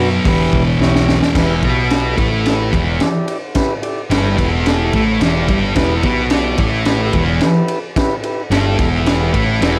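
This swaggering, gritty garage rock excerpt opens with a thick, bright fuzz guitar riff, double-tracked and up front, over a growling overdriven electric bass and mellow, clean sustained chords from a vintage combo organ. A crunchy breakbeat drum kit comes in at 0.3 s with a dark, saturated sound: a high-tuned snare, a tight kick, a rolled-off top and dusky hi-hat, ride and crash cymbals. A drum fill at 0.8 s carries the band into the main passage, which settles in at 1.4 s and holds its steady, straight 4/4 groove at 109 BPM in E minor. The bass is heard both direct and amped, giving it a warm tone beneath the distorted guitar, while the organ sits quietly in the background. A moderate small-room reverb gives the whole group a close, live-in-the-studio feel.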